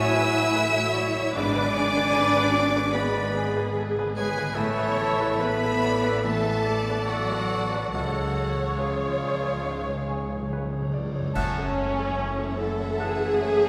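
Set in a wet concert hall, this sorrowful, bittersweet orchestral film-score excerpt moves with a rubato feel as a rich, vibrato-laden violin section carries the melody over a dark, expressive viola section with portamento, a second violin line in the background, airy close-miked flute, distant clarinet, polished piano, mellow French horn chords, a very quiet ringing fingerpicked harp, and smooth, distant cello and double bass sections. At 8.0 seconds, articulate hard-mallet timpani and dark cymbals with bass drum enter, the timpani playing a fill that leads to a full-ensemble accent at 11.3 seconds, just after which a clear solo oboe briefly joins in the background.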